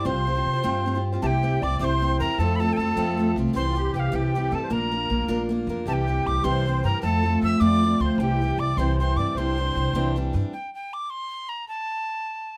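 A moderate studio reverb gives this lively, rollicking Celtic folk piece in C mixolydian a natural sense of space, cut from a longer performance in a straight 6/8 at 103 BPM. Up front, a close-miked metal mid whistle carries the tongued, airy melody with chiff and vibrato, while a reedy, shimmering musette accordion plays a second line, a picked steel-string acoustic guitar supplies a warm accompaniment, and a woody pizzicato upright bass anchors the changes from Csus4 through C, F and Bb to Cadd9. The accordion, guitar and bass drop out by 10.5 seconds, leaving the whistle alone until the end at 12.6 seconds.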